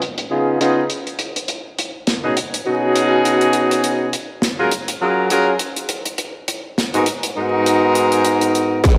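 Swung at 102 BPM in 4/4, this funky, gritty glitch hop excerpt in G# dorian sets a big-room acoustic kit of filtered hi-hat and medium-tuned snare under up-front stabs from a warm horn section, crunchy with vintage 12-bit sampler grit, sidechain pumping and digital delay and carried by a long filter sweep through C#7, B69, F#maj7 and G#m7, until at 8.8 seconds a distorted, tape-toned electronic kick and a chorused, formant-swept wobble bass land on C#2, all washed in plate reverb and vinyl crackle.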